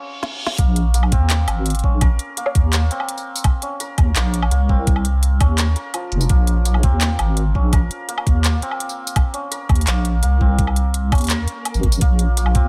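Tense and spacious, this half-time drum and bass excerpt at 168 BPM in Bb minor opens with a reverse cymbal and a short drum fill before dropping at 0.6 seconds into a knocking, up-front electronic kick, an organic electronic kit of woody snare, crisp hats, handclaps, tambourine and woodblock, and a deep, dark, saturated wobble bass with chorus, all alongside bright, shimmering santur arpeggios ringing through delay, with a swell at 11.4 seconds and an eerie, nasal metallic drone entering in the background at 12.1 seconds over a dry mix.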